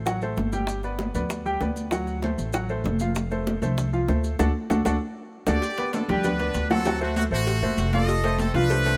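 A woody, thumpy upright bass opens this joyful, danceable salsa excerpt in G major at 194 BPM, quickly joined by a clear concert grand piano, tight bongos and cowbell, bright high-tuned congas and grainy maracas in the background, before a band accent at 4.4 seconds and a drum fill at 4.7 seconds lead to a brilliant, punchy horn section taking the melody from 5.5 seconds in a light reverb.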